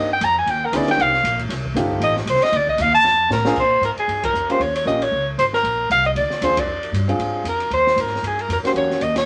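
Swinging and warm, this brisk small-group jazz passage at 232 BPM in Bb mixolydian puts a vintage-toned soprano saxophone up front, singing the melody with a soft attack, light vibrato and scooped notes, over a grand piano whose chords ring with long sustain. A woody, thumpy upright bass with gut strings is plucked underneath, while an acoustic drum kit with dark cymbals, a high-tuned snare and a punchy kick swings in a small room, adding a fill from 3.0 seconds. The full band then hits accents at 4.2 and 6.5 seconds as the chords move through a bop progression, all set in moderate studio reverb.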